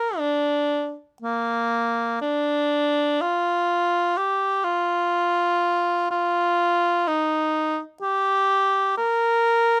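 Classical and unaccompanied, this brief fragment of a longer piece features a solo cor anglais in a free, expressive 3/4 with uneven, rubato beats, setting a nostalgic, serene mood. The instrument's warm tone sits up front, close-miked and detailed in a dry space, as it moves between Bb3 and Bb4 across its 9.8 seconds.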